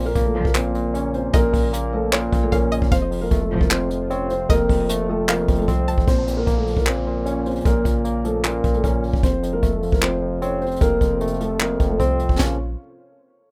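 A dry, rough home-demo sound frames this dark, brooding trap excerpt at 152 BPM in a half-time 4/4 feel, set in Bb harmonic minor over chords moving between Bbm and F. A mellow, boxy concert grand piano carries the melody throughout, while a barky, lightly overdriven tine electric piano sits up front with the accompaniment. A bright, twangy resonator pluck with chorus and tape echo adds a high second line until 6.1 seconds, when an electronic downlifter enters in the background. A sawtooth analog pad holds very quiet, detuned chords, and a deep, boomy 808-style bass with a fast attack anchors the low end. An acoustic brush kit with a high-tuned snare, handclaps, hi-hat, kick and splash cymbal stays up front, and a lush symphonic string section adds brief bowed stabs in the background near the start.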